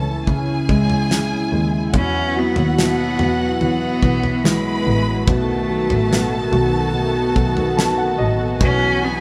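A slow, straight 4/4 pulse at 72 BPM carries this heartfelt pop ballad excerpt in E major, with a dry 70s drum kit of fat snare, tight kick and toms entering at 0.3 s beneath a rich, bowed double bass and a baby grand piano with short sustain that adds a fill near 7.4 s. Up front, a focused bowed cello with vibrato takes the melody from 2.0 s, while a lush symphonic violin section with soft attack plays a second line over a detuned sawtooth pad with chorus holding sustained chords. The band sounds live in a stone room with moderate reverb, moving from Amaj7 through Esus2 and B7 back to Esus2.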